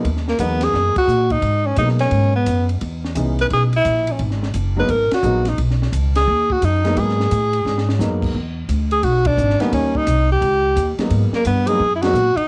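A clear alto saxophone carries the melody up front from 0.3 s, its subtone and vibrato given a present, jazz-style solo voice and a sheen of plate reverb over a cassette-tape grain. This is a moody, late-night excerpt of small-group swing and bop in G# minor, moving at a brisk 174 BPM in 4/4 with a swung eighth-note feel. The upright bass sits close and thumpy, its woody gut-string pizzicato anchoring harmony that moves from G#m7 through C#m7, then E7 and D#7 before settling on G#m7. A baby grand piano supplies natural, short-sustained accompaniment with its own plate reverb and tape tint, while a compact cocktail kit, dark and smooth with a rolled-off top, a high-tuned snare and a punchy kick, works ride, hi-hat and crash quietly in the background. The band hits accents together throughout, and a brief drum fill at 7.7 s leads into the turn toward E7. The whole has the intimate, modest-room feel of a home cassette recording.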